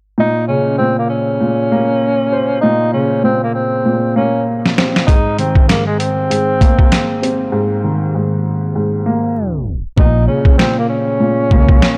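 A breathy, whispered tenor saxophone with tape echo carries the melody over a woody, slightly detuned upright piano from 0.2 s in this dark, gritty boom-bap hip-hop excerpt, with compressed, pitched-down sampler-style drums and their thumpy kick arriving at 4.7 s, followed by a break and a tape stop before a round fretless bass enters at 10.0 s as the hi-hats drop out, set in a small room with light reverb and a faint mains hum.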